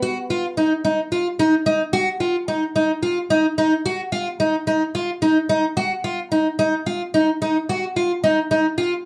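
A fingerpicked twelve-string acoustic guitar plays alone and up front from 0.0 to 8.9 seconds in this driving, intricate progressive instrumental excerpt in 7/8 at 219 BPM counted in eighths, tuned to A4 = 442 Hz, its shimmering, octave-doubled tone staying between D#4 and F#4 with audible finger squeak inside a wet studio reverb.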